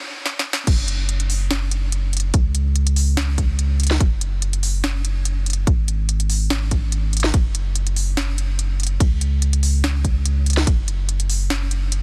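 A deep, thick saturated sub bass with sidechain pumping drives this lush, bright future bass at 144 BPM in a half-time feel, arriving alongside a hard-clipped electronic kick drum at the drop at 0.7 seconds, after a brief stop and a trap drum kit fill from 0.3 seconds, with the kit's sharp snare, crisp hi-hats, crash and ride cymbals sitting up front in a dense, heavily limited, dry mix.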